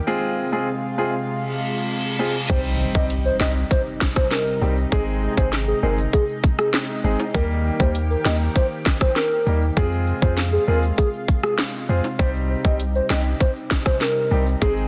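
Over a straight 4/4 dancehall groove, this bouncy, hypnotic excerpt opens with a brief break in which a lush, detuned unison pad holds sustained chords, pumping under sidechain and softened with chorus, while a polished grand piano with short sustain plays accompaniment from 0.1 seconds. A reverse cymbal rises into an electronic impact at 2.5 seconds, where the full arrangement arrives. The island pop drum kit sits up front with a tight kick, sharp snare, rim click, dark hi-hats and crash cymbal, joined by a deep, punchy sine sub bass with a pitch-drop attack. A hollow, woody clarinet-like synth lead carries the melody with vibrato, chorus and delay, while a bright, close and dry egg shaker and timbales add a light acoustic layer beneath. The chords move from F minor through C minor, A-flat, E-flat and back, all set in light digital reverb within a dense, heavily limited modern master.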